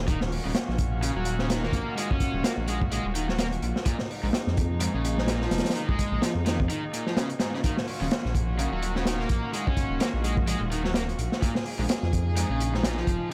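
Breakbeat in Eb minor at 127 BPM, this funky, swaggering excerpt from a longer piece moves in 4/4 with a 57% swing on the sixteenths. A crunchy breakbeat kit sits up front, its punchy kick, medium-tuned snare and hi-hat sounding saturated and gritty with a rolled-off top, while a dark detuned saw bass rumbles underneath with a deep, beating unison tone. A raw garage guitar, overdriven and picked, plays a riff coloured by tape echo and vintage 12-bit sampler grit. Behind them a distant chamber string section holds rich, earthy bowed chords with light vibrato, carrying the same sampler grit and a sidechain pumping. The harmony alternates between Ebm7 and Bb7sus4, with a break from 6.7 to 7.6 seconds, and the whole mix is dry with little reverb.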